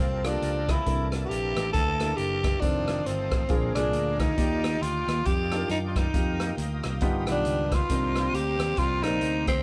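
Soulful and uplifting, this short excerpt from a longer uptempo gospel piece moves at 137 BPM in a swung 4/4. A growling tenor saxophone carries the melody up front, its tone breathy, raspy and gritty with a touch of vibrato. Behind it, a bright tonewheel organ holds sustained chords in the background, lightly overdriven with key click, chorus vibrato and a slow rotary speaker. A concert grand piano with a deep bass register adds accompaniment from 0.2 seconds, while a punchy, amped fingered electric bass anchors the low end. A swinging big-band drum kit, with a punchy kick, hi-hat and rim click, sits up front with a natural studio-room sound. A very quiet string section, bowed sul tasto with a soft attack and smooth top, pads the high register as the harmony moves from Gm9 through Ebmaj9 to close on Cm9, all caught as a band playing live in one room with light reverb.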